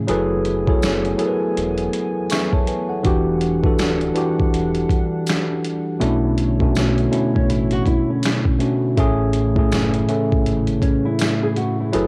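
Dry, cassette-worn home recording of a cosy, dreamy lo-fi hip hop excerpt at 81 BPM in A major, where a slightly out-of-tune tine electric piano sits up front over a warbling, detuned tape-like pad in the background, a deep sine sub bass and a gritty, compressed boom bap kit with thumpy kick, snaps, hi-hat and snare, a distant jingly tambourine, and, from 7.3 seconds, a dark, woody, thumb-plucked nylon-string guitar with analog delay, all moving through F#m11, Em9, Bm11 and Amaj7 with a swung 16th-note feel.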